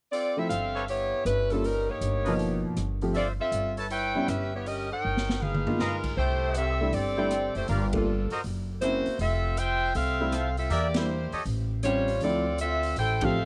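Big band swing with a brassy, joyful mood: a tight, present saxophone section carries the melody up front with light vibrato and a touch of tape echo, while a clear trumpet section punches in with vibrato-laden ensemble stabs until 11.4 s. A slightly detuned upright piano accompanies, and a woody, pizzicato upright bass sits up front. Beneath them, a big-room drum kit with a punchy kick and medium-tuned snare swings along, adding a fill at 5.0 s, with band accents landing at 7.9, 10.9 and 13.2 s, all captured in a dry, close 1970s-style studio sound.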